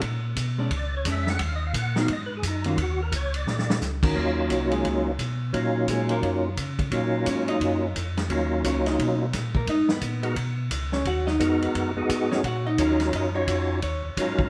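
A moderate stone-room reverb surrounds this smoky, bluesy soul jazz organ trio, played live in one room with a swung 4/4 feel and cut from a longer piece. A soft, flute-like tonewheel organ carries the bass through chorus vibrato and a stopped rotary speaker, and a vintage kit with dark cymbals and a punchy kick keeps time. A dark, clean hollow-body guitar accompanies, while an up-front, fat, lightly overdriven percussive organ with key click and a slow rotary speaker leads; the organ solos first, a drum fill lands at 3.5 seconds, and the guitar takes the solo from 4.2 seconds onward.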